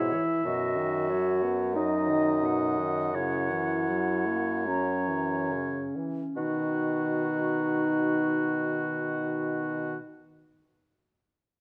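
A dark, warm production sits in a moderate recital hall, giving this lyrical, tender slow romantic movement for wind quintet an intimate glow. Cut from a longer piece and played with rubato in 4/4, the music slows down through its opening 6.4 seconds before moving into a new section. A concert flute carries the melody with a pure tone, soft attack and expressive vibrato, yet it sits in the background, while a punchy, distant oboe shapes a second line. A dark clarinet and a roomy French horn with light vibrato form the accompaniment, and an up-front bassoon with a smooth top anchors the bass. All five instruments play from the start to 10.0 seconds, with the harmony resting on B/F# and F#7 before settling on B at 6.4 seconds.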